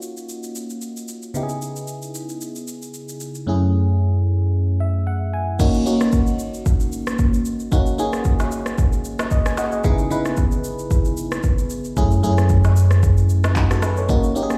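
A swung 4/4 groove at 113 BPM drives this hypnotic, soulful amapiano excerpt in Eb phrygian, its organic electronic drum kit laying down a deep kick, woody snare, rim clicks, handclaps, shaker and crash cymbal with an overdriven edge, heard through a large room. Up front beside the drums, a glassy FM electric piano with a bell-like attack and a noise layer colours the Ebm7, Dbm7 and Gbm7 chords through chorus, phaser and a low-pass filter. The piano plays a fill from 4.5 to 5.6 seconds before the second section begins.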